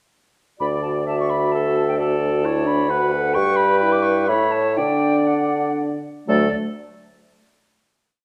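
This quick classical-period movement for wind quintet is a complete short piece in D major and 3/4, graceful and spirited, moving at 117-134 BPM with a rubato feel. From 0.6 seconds the silver concert flute carries the melody with a pure tone, vibrato and a crisp attack, set a little back yet expressive. Beneath it the oboe adds a second line with light vibrato, while the clear French horn plays independent inner lines and sustained chords, and the mellow clarinet offers a counter-melody. The bassoon sits up front with a vintage colour and light vibrato, holding a sustained bass. The theme runs from D through Bm7/D, G, Em/G and A back to D, then settles onto a final chord at 6.3 seconds. A wet recital hall reverb and a dark, warm production give the ensemble a roomy, distant glow.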